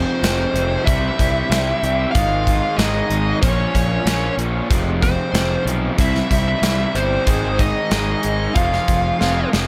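Classic rock with a gritty, swaggering feel, cut from a longer piece, where a fuzzy, distorted lead guitar carries the melody over a darker octave-fuzz second guitar line touched with tape echo, while two bright, overdriven rhythm guitars, one crunchy and one raw garage-toned, pick out riffs in the background. Up front, a punchy fuzz fingered bass drives the low end, and a gated 80s drum kit enters at 0.2 seconds with a tight kick, medium-tuned snare and hi-hat in a big, airy, polished room sound. The chords move through F minor, C, A-flat and B-flat minor with little reverb overall, and a drum fill closes the passage at 9.2 seconds.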